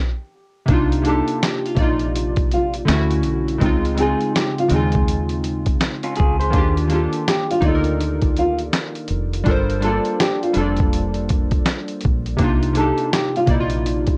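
A swung 82 BPM lo-fi hip hop groove in 4/4 kicks in at 0.7 seconds on a dusty, sampler-style kit with a thumpy kick, fat snare, hi-hat and handclaps, under a round, foam-muted fingered electric bass and up-front analog keys with chorus that drift through hazy, melancholic C dorian chords from Cm11 to Gm11. A dark, thumb-plucked nylon-string guitar carries the melody, while a slightly broken-up electric guitar through a small old amp adds a brief tape-echoed second line around 6.0 seconds. Worn, warbling cassette tape and light reverb give the whole cut its faded, lo-fi sheen.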